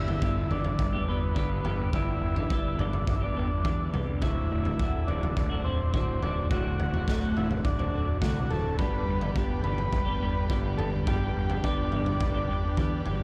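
This psychedelic rock excerpt opens at once with a buzzy vintage combo organ carrying the melody through a tape echo, a bright, twangy twelve-string electric guitar riff that is double-tracked and colored by a phaser, and a fuzz-drenched fingered bass that sounds punchy and overdriven. A raw garage drum kit of kick, snare and toms joins at 0.1 seconds, sitting up front with a gritty, saturated, pumping small-room character and a rolled-off top. The groove moves at a straight 105 BPM in 4/4, cycling from G to D7 and back to G, with the instruments tuned slightly low to A4 = 438 Hz. At 8.8 seconds a second combo organ slips in quietly with soft sustained chords, its light vibrato echoing the lead organ's clean tone. A huge ambient reverb with a long 9.1-second tail soaks the dreamy mix, giving the short cut a hypnotic, kaleidoscopic haze.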